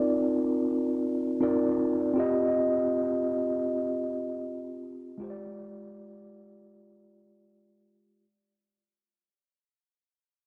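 Played in free time, this short reggae fragment from a longer piece drifts along with an unhurried, longing and bittersweet mood in F dorian. A mellow tine electric piano plays alone throughout, ranging from Ab3 to Eb5, and sits up front with a clean tone heard through its built-in speakers. Cassette tape colouring and an analog delay shape the piano, while a wet spring reverb with a 3.0-second tail gives the home cassette recording a soft, lingering space. The harmony moves from Cm11 at the opening to Eb69 at 2.2 seconds and settles on Fm69 at 5.2 seconds. The whole passage is a fade-out, so the music feels like it is already slipping away as it plays.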